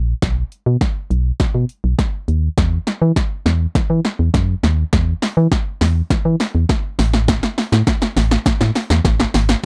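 Dance-pop at 102 BPM in a straight 4/4, upbeat and carefree, this short excerpt cut from a longer piece builds throughout with a drum fill, as a hollow, dark, organ-like FM bass with sidechain pumping opens at 0.0 seconds and an overdriven deep house kit of deep kick, punchy snare, hi-hat and shaker joins at 0.2 seconds, both up front in a dry, close 1970s-style studio sound.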